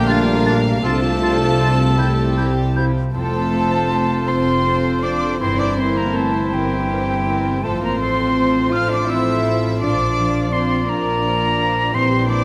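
Serene and lyrical, this slow romantic orchestral movement in a rubato 6/8 sways gently as a soft, sul tasto violin section carries the melody over a second violin line, a smooth cor anglais and a bright clarinet, while an airy flute floats high above, woody violas, distant dark horns and ringing harp arpeggios fill the middle, and cellos and double basses, joined by a very quiet tuba only until 2.9 seconds, anchor the bass in a moderately reverberant stage sound.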